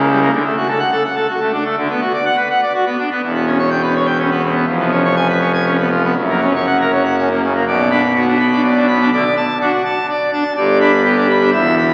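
A pipe organ on full organ plays alone throughout this brief cut from a longer classical organ toccata, its brilliant mixtures and romantic voicing sitting up front and spanning from E1 to B5. The mood is dramatic and majestic, moving in 3/4 at 124 BPM in B minor, with harmony that builds through D, Bm/D and C#7/E# to F# before a new section opens at 7.7 seconds on Bm and moves through D to G. The sound is bathed in a cathedral reverb with a long 4.1-second decay and carries the crackle of a very old 78 rpm record.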